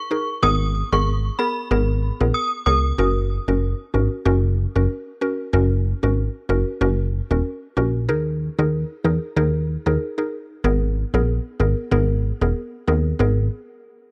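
A swung sixteenth-note feel in 4/4 drives this hypnotic, tough dancehall cut, taken from a longer piece. A chiming, inharmonic synth chime with an FM vintage character opens the melody high up, ringing briefly through ensemble chorus and digital delay before it stops at 2.8 seconds. A woody, round mallet-like synth pluck, percussive with a noise layer and a chorus sheen, carries the accompaniment in the middle register from 0.1 seconds onward. The plucky analog bass enters at 0.4 seconds, punchy and funky, its detuned, wave-folded tone sitting up front with a fast filter pluck that decays quickly. The harmony moves from G#madd9 to F# and D#sus4 before returning to G#madd9. The recording is wrapped in digital ambience and a worn, cassette-like wobble of pitch drift.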